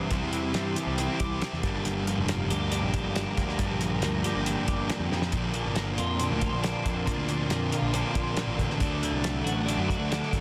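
A sludgy, overdriven electric guitar stands up front with a riff coated in lush chorus and digital delay, joined by a bright, twangy twelve-string electric guitar riff through phaser in the background and a round, punchy fuzz bass. This upbeat, carefree indie rock excerpt moves at 138 BPM in a straight 4/4, with a dry, dark, cloth-damped drum kit of fat snare and tight kick entering at 0.1 seconds and playing a fill at 5.1 seconds. Behind them, a silky, mellow string machine holds sustained chords through phaser and ensemble chorus over a progression from C to Gm7, Bbadd9 and D, set in light reverb within a dense, heavily limited modern master.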